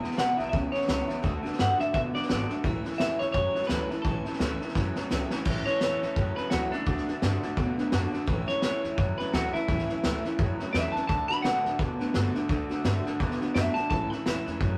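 Rockabilly at 171 BPM in A major, swung and rowdy with a retro edge, this cut from a longer piece pairs a picked steel-string acoustic guitar in the background and a slightly broken-up, lo-fi electric guitar riff through a small old amp with spring reverb, over thumpy, woody pizzicato upright bass and a gritty, saturated vintage drum kit with dark cymbals and a punchy kick. After a drum fill from 4.8 to 5.5 seconds, a bright, twangy clean electric guitar takes a solo that runs to the end, as the chords move between E, D and A. The rough rehearsal-room recording has a stone room reverb and warm saturation.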